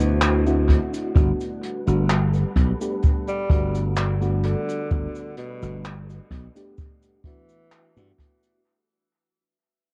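A breathy tenor saxophone, mellow FM electric piano, soft string machine, slap bass and open jazz drum kit all sound together from the start of this short vaporwave excerpt. It sits in G major at a slow 64 BPM in straight 4/4, moving from D7 to Gmaj9 while the whole passage fades out. The saxophone carries the melody low in its range with a whispered, intimate jazz tone, vibrato and scooped notes, trailed by tape echo. The electric piano supplies round, warbling accompaniment coloured by analog chorus, analog delay and cassette tape, while the string machine holds silky sustained chords in the background with phaser, ensemble chorus and vintage sampler grit. A growly, punchy slap bass driven through tube saturation sits up front, and from 0.7 seconds a boomy acoustic kick joins it, with the drum kit's cabasa, handclaps and hi-hat carried by analog delay. The echo-heavy small-room sound and cassette tape colouring give the piece a faded, nostalgic haze.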